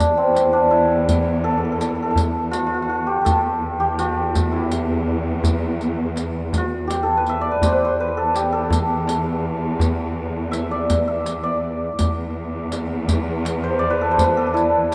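Longing and melancholic, this Persian modal ensemble piece moves in 6/8 and is a fragment cut from a longer work. A mellow, shimmering santur carries the melody up front, its hammered notes ringing throughout the full 14.9 seconds. Beneath it, a bowed symphonic cello section holds a low drone, also up front, with a smooth top, expressive vibrato, portamento and a soft attack. A tight tombak sets the percussion from a small room, while a band-limited riq adds bright, vintage jingles lower in the mix. The ensemble sits in a moderate, lush hall reverb, yet the overall sound keeps the rough quality of a home demo.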